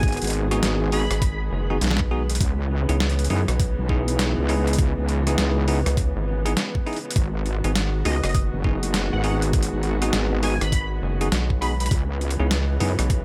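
Swaggering and playful, this glitch hop excerpt in G# minor struts at 101 BPM with a swung 16th-note feel, built on an up-front knocking electronic kick, a gritty, pitched-down sampler-style kit of hi-hat, rim click and overdriven snare, a heavy, saturated wobble bass joined at 1.1 seconds by a rubbery, nasal square bass, bell-like electric piano stabs with delay and sidechain pumping, veiled con sordino strings holding pumping chords in the background over G#m7 and C#m7, and an edgy, tearing sync lead with chorus and delay that appears briefly at the start and returns at 8.1 seconds, all in a dry, close sound.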